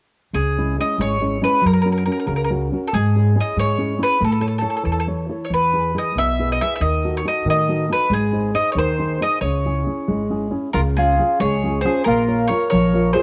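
A bright, picked bowl-back mandolin carries the melody of this passionate, wistful Italian folk serenade in a straight 6/8. It sits up front beside a dark, deep classical nylon-string guitar played with the thumb, while a woody, thumpy upright bass with gut strings plucks beneath them. At 10.7 s a rounder, warm second mandolin enters with its own line as the harmony shifts, and the fragment breaks off at 13.2 s. The mandolins and guitar carry a homemade cassette-tape grain, set in a small room with moderate spring reverb.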